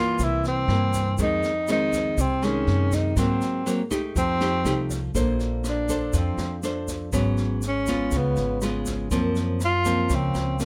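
Romantic and relaxed, this bossa nova excerpt features a breathy, whispered tenor saxophone carrying the melody up front with mellow vibrato and moving into a solo at 5.1 seconds, over dark, fingerpicked nylon-string guitar chords, a woody pizzicato upright bass, a distant, roomy brush drum kit with a boomy kick and rim clicks, and a grainy, bright tube shaker, all set in light reverb.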